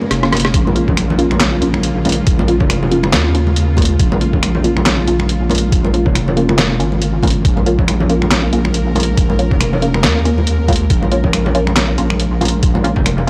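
A bowed-like drone and ringing, hard-handed congas open this cut from a longer deep dubstep piece in Bb minor, its heavy, cavernous mood settling at 139 BPM in a swung, half-time 4/4. The string-like drone sits in the background, tense and detuned with a noise layer, slow attack, vibrato and its own built-in reverb plus vintage 12-bit sampler grit, while the band-limited acoustic congas carry a dub echo. At 0.1 seconds a saturated wobble bass arrives up front, square and sine tones blended into a mellow, compressed weight with chorus, alongside a trip hop sampler-style kit of finger snaps, handclaps, hi-hat, rim click and a medium-tuned snare, pitched down and tape-warm. That kit plays a short fill before the thumpy, pitched-down electronic kick enters at 0.5 seconds, both drum parts sharing a small room reverb. A filtered dub chord stab adds dark, muted sawtooth plucks with a sub octave, phaser, lush chorus and dub echo. 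The overall sound is dry and gritty, like a hardware recording, with the bass and the sampler kit pressing forward over one Bb minor chord.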